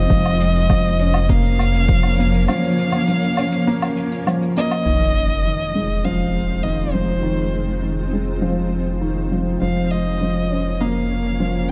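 Dark, lightly reverberant small-room production frames this moving, hypnotic piano and strings electronica excerpt in F minor at 101 BPM, where a felt-muted upright piano plays a mellow riff with audible action noise and delay, a clear, close violin carries a vibrato melody through delay, a blurred granular cloud pad holds evolving chords, a round analog bass pumps on F1 under sidechain, quiet brushed hi-hat and woodblock sit in the background through low-pass filtering, a punchy layered electronic kick stops at 2.0 s ahead of a break, and a sub drop marks the impact at 4.9 s.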